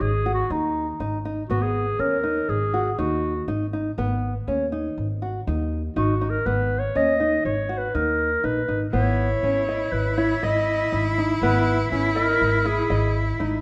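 A raspy, growling clarinet carries the melody with scooped notes and light vibrato over fingerpicked nylon-string guitar arpeggios and a woody pizzicato upright bass in this restless, pensive chamber piece in 5/4 at 121 BPM in G# minor, where a clear, bowed cello joins on a second line at 8.9 seconds, all set in a moderate scoring-stage reverb.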